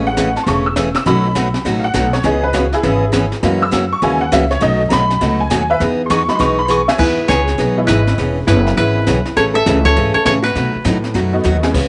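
A jangly, detuned honky-tonk upright piano takes the lead from the start, backed by a bright, picked dreadnought acoustic guitar with audible finger squeak, a thumpy, woody pizzicato upright bass and a brushed jazz kit with dark cymbals and a high-tuned snare, swinging along at 202 BPM in E major in this playful western swing cut. At 7.0 seconds, after a drum fill, a dry koto played with fingerpicks carries the melody while a dark, clean, compressed hollow-body electric guitar adds a second line that drops out at 10.7 seconds. Light reverb and a small room ambience surround the playing.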